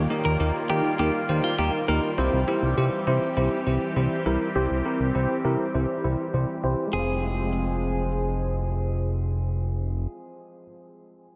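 Synth-pop in a melancholic, cool mood, this short section of a longer piece moves at a steady, straight pulse. A swirling, detuned analog pad with phaser, chorus and a low-pass filter holds sustained chords throughout, while a fat, saturated analog bass sits up front beneath it. A bell-like tine electric piano, bathed in lush chorus, plays accompaniment, and a very quiet unison pluck with a moving notch traces arpeggios behind it. A clean, compressed electric guitar with analog delay adds a second line in two brief phrases, first near the opening and again from 6.9 seconds, where the harmony settles from Eb and C onto F minor. A barely audible downlifter and a filter sweep shape the first stretch, and the whole mix is dreamy and soaked in a long cathedral reverb.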